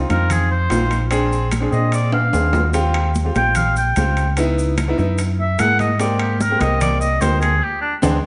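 A distant, roomy oboe carries the melody up front in this fiery, sophisticated Afro-Cuban jazz fragment, accompanied by a warm baby grand piano and a dark, round, punchy fingered electric bass, while congas, ringing metal-shell timbales and grainy maracas sit in the background, a drum fill breaks in at 2.1 seconds and the band hits an accent at 7.6 seconds, all within a large studio reverb.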